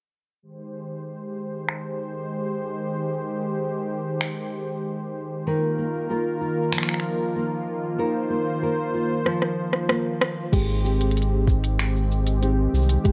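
Folktronica at 95 BPM with a delicate, intimate mood, this fragment opens on a smooth, detuned analog pad holding chorused chords from Abmaj7 to Ebsus2, joined at 1.7 s by an up-front, overdriven organic electronic kit of cabasa, finger snaps, rim clicks, smooth hi-hats and crash cymbal under a filter sweep, then at 5.5 s by full-bodied, thumb-plucked nylon-string guitar arpeggios with finger squeak and digital delay, before a drum fill gives way at 10.5 s to a round, deep analog bass and a soft overdriven electronic kick, all in light reverb.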